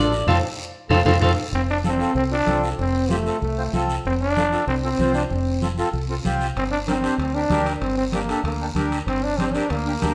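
Joyful and danceable, this cumbia in F major moves at a straight 191 BPM, opening on a twangy, slightly broken-up electric guitar melody bathed in spring reverb that stops at 1.3 seconds, while a reedy accordion with slow beating and a round, punchy dub bass carry the groove. A raspy guiro sits close and dry, damped soft-hand congas stay in the background, and ringing metal-shell timbales join the opening band accent and drum fill, then return at 6.6 seconds as the harmony moves from F to Gm. From 1.6 seconds a gritty, growling trombone takes an up-front solo with light vibrato, all heard as a band playing live in one room with a wet studio reverb.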